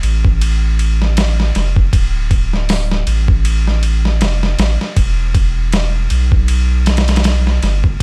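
A round, deep analog bass with tube saturation and a gritty, overdriven sampler-style drum kit with a thumpy kick, medium-tuned snare, hi-hat and ride open together at the start of this smoky, dark trip hop excerpt, which carries a swung 16th-note feel, sits dry and up front, and is coated in vinyl crackle.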